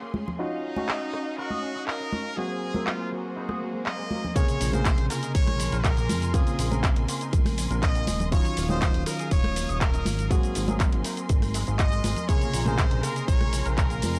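Sensual and groovy, this nu-disco excerpt in Bb minor at 121 BPM opens with an overdriven, reedy electric piano carrying sampler grit, lush bowed strings with sidechain pumping, a twangy envelope-filtered guitar riff with chorus, bright thin-skinned congas, a brilliant trumpet-section melody through analog delay, and a house kit with bright hats, handclaps, rim click and shaker, until a background swell leads into a drop at 4.4 seconds, where a punchy, up-front electronic kick and a fat, saturated, detuned analog bass with a filter sweep arrive over Ebm9, Ab9 and Bbm9 chords in a dry, gritty hardware sound.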